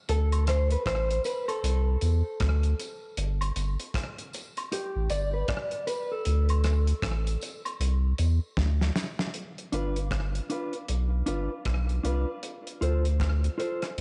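Roots reggae at a relaxed 78 BPM in G mixolydian with a swung sixteenth-note feel and an uplifting mood, built on a round, deep sub bass carrying tube saturation and a cloth-damped, thuddy drum kit with slapback echo, while a dark, clean electric guitar with tape echo takes a solo until 9.3 seconds, woodblock and tambourine add color until 9.2 seconds, and a drum fill at 8.6 seconds leads into a second section over G7 and Dm7, all in a small room with light reverb.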